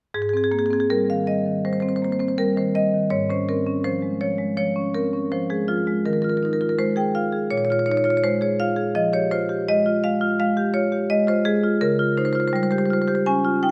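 A solo marimba played with medium hard mallets opens this playful, flowing fragment of a contemporary classical piece, its bright, percussive, mid-forward tone sitting up front in a moderate concert-hall reverb as it moves rubato at about 83 BPM in 4/4 through Ab major harmony, spanning Ab2 to Ab5 and passing from Abmaj9 through Dbmaj7/Ab, Ebsus24, Bbm7 and Fmadd9 to a closing Dbmaj7#11 at 11.8 seconds.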